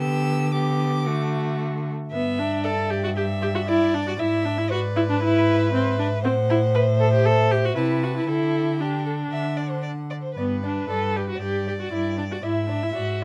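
Closely miked with light reverb and fine detail, this lively, graceful excerpt from a quick classical-period string quartet movement in G major moves at 116 BPM in a straight 4/4. The first violin carries the melody high above the group with vibrato and expressive portamento, though it sits in the background, while the second violin plays a focused, smooth-topped second line beneath it. Up front, a rich viola accompaniment and a cello bass, both even and bowed with vibrato, carry the harmony, which passes through E7/G# and Am to a Dsus4 resolving to D after a brief opening section gives way at 2.1 seconds.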